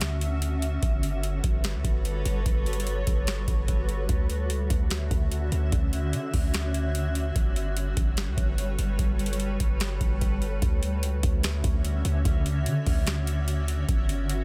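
A booming analog drum machine sits up front with a deep kick, crisp snare and metallic hats in a half-time, floating cloud-rap hip hop groove, over a mellow 808-style sine bass with a noise layer and a blurred, detuned granular pad whose built-in reverb and sidechain pumping drift through dreamy Dmaj9 and Gmaj9#11 chords, moving into a new section at 10.6 seconds in this dense, heavily limited cut from a longer piece.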